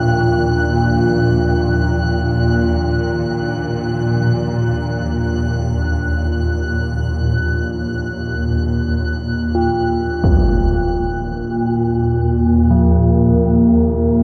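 A swarming, detuned drone sits up front in this desolate dark ambient fragment, tense and evolving beneath the ringing, meditative arpeggios of a quartz singing bowl struck with a wooden striker and trailed by tape echo. A faint, crystalline glass pad with chorus hovers high above until a huge, bright impact lands at 10.2 seconds, and at 11.2 seconds a deep, full-bodied analog pad with chorus takes up moody sustained chords. The whole piece sits in a vast ambient reverb and carries the worn, warbling pitch drift of old cassette tape.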